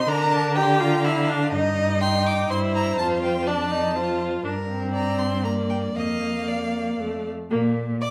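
A rich first violin carries the melody between D5 and D6, its vibrato heard from a distance, in this cheerful, graceful excerpt from a quick classical-period movement for string quartet in Bb major. The tempo sits at 122 BPM in 3/4, with a rubato feel. Close by, a second violin adds a warm, expressive line with soft attacks, vibrato and portamento. A sonorous viola fills in the accompaniment with its own expressive vibrato and portamento; it sounds distant in the room yet sits up front in the balance, as does the cello, which anchors the bass with a focused, close, vibrant tone. The harmony moves from Bb/D through Eb/G, C7/G, F7 and Gm to Bb/F and F before settling on Bb at 7.5 seconds, framed by a moderate recital hall reverb.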